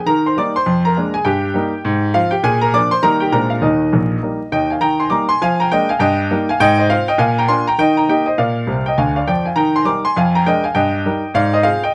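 Swung eighths at a brisk 202 BPM in 4/4 drive this playful, exuberant stride jazz fragment in Eb major, where a clear, present solo grand piano sits up front across a range from Bb1 to D6, cycling through a chord progression, breaking into a short fill at 8.7 seconds, and ringing in a moderate club reverb over a bed of vinyl crackle before the 11.9-second cut from a longer piece.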